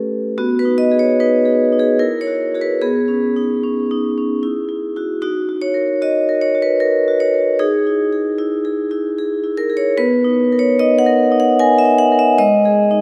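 Up front and ringing with a metallic edge, a solo vibraphone struck with medium hard mallets and its motor off plays a warm, playful contemporary classical excerpt in a flexible, rubato 3/4, moving through B6, Eadd9, D#m and Emaj7/D# toward Bmaj7 between G#3 and G#5, all bathed in a moderate church reverb over its 13.0 seconds.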